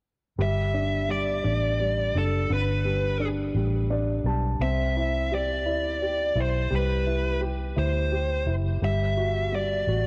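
A fuzz lead guitar carries the melody up front, its distorted, picked tone sitting in a narrow range from A4 to E5 and coloured by a cassette-tape grain. This is a tender, heartfelt pop ballad in G major, moving slowly in a six-eight lilt at 57 beats per minute, cut from a longer piece. Underneath, a dark, mellow grand piano shares that tape character as it accompanies across a broad span, and it steps forward with a brief fill between 3.5 and 4.6 seconds. A vintage muted fingered electric bass gives a round, punchy, foam-muted low end that sits close and amped in the mix. The harmony moves from a G power chord to C at 4.6 seconds, then settles on an open Gmaj7 near the end. Light reverb and a hint of studio ambience frame the intimate, home-recorded sound.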